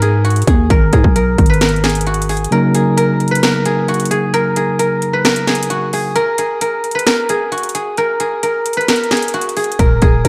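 Hard-hitting and melancholic, this half-time trap excerpt sets a silvery, fingerpicked guzheng melody, softened by a low-pass filter and delay, over electronic drums with a hard-clipped kick and metallic hats, as a growling 808-style bass drops out at 2.5 seconds, when a worn, slightly out-of-tune tine electric piano joins until 6.2 seconds, before the bass returns at 9.8 seconds in a dreamy, reverb-soaked mix.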